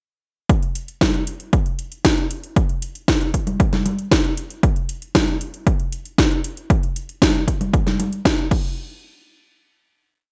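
A straight 4/4 groove drives this short italo disco piece, built on a punchy four-on-the-floor electronic kick that sits up front with a layered, overdriven edge. From 0.5 s a house drum kit plays alongside it in a disco machine beat, with a cracking snare, metallic closed hi-hats, high congas and crash cymbal, also overdriven and treated with gated reverb. Both drum parts sound re-recorded in a large room, giving them a produced, roomy weight under a light overall reverb. The mood is nostalgic and melodramatic, with the beat carrying the whole verse until both parts stop at 8.6 s. A final hit from 8.8 s closes the piece.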